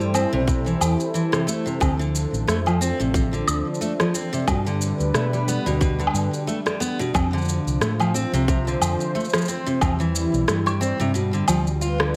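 A woody, up-front picked steel-string acoustic guitar with old strings plays delayed arpeggios over a warbling, detuned vintage analog pad with lush chorus, a round, dark hollow-body electric bass, close electronic shaker, woodblock and rim click, and a tight, tape-toned electronic kick that enters at 0.5 s and stops at 10.0 s, giving this intimate, autumnal folktronica excerpt in D dorian a gently swung 90 BPM pulse through Am7, Dm7, Gadd9 and G7 chords under light digital ambience.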